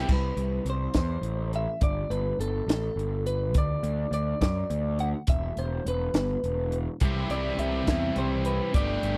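Wistful and jangly, this short cut from an indie rock piece moves at 69 BPM in a straight 6/8, with a slightly broken-up, compressed electric guitar through a small old amp carrying the melody with slapback echo over a growly, fuzzed-out picked bass and an up-front cocktail drum kit with a punchy kick, high-tuned snare and dark cymbals. A bright cranked stack guitar and a crunchy, chorus-washed guitar set further back sound briefly at the very opening and return with riffs at 7.0 s, the chords moving through C, Gsus2, D and Em in a close, dry 1970s-style studio sound.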